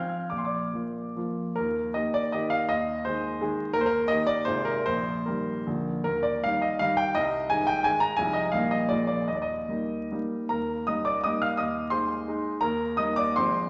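A lilting triple-time dance with dotted rhythms sets the pulse, pushed and pulled by a free rubato that gives this romantic classical fragment a graceful yet rustic charm. A solo baby grand piano carries everything, its tone warm, polished and placed up front, ranging from deep bass notes to bright upper treble. After a brief opening phrase, a new section begins at 1.6 s, circling through gentle home-key harmonies and arriving at a dominant seventh chord at 8.9 s before settling back. That section returns at 10.5 s, and the fragment breaks off at 13.7 s as though lifted from a longer work. A generous scoring-stage reverb surrounds the piano, while a soft vinyl crackle and a dulled top end give the sound a vintage, old-record patina.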